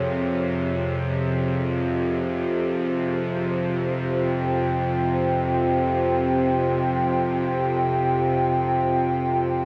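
A tense, string-like bowed drone with vibrato sits up front in its low register while a dark, nasal, detuned analog pad with chorus holds sustained chords above it, moving from Db to F minor at 1.4 seconds in this desolate, cavernous ambient fragment in free time and F minor, all bathed in a huge, wet reverb.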